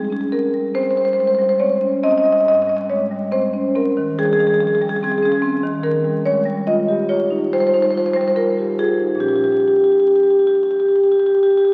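A rubato pulse in four carries this short, hypnotic and reflective excerpt from a contemporary classical piece for solo marimba, cut from a longer work. Played with medium hard mallets, the marimba sounds warm, airy and up front, moving through Fmadd9, Abmaj7, Ebadd9 and Bbm6 across its 11.7 seconds. A wet church reverb surrounds it, and the crackle of a very old 78 rpm record gives the sound an aged patina.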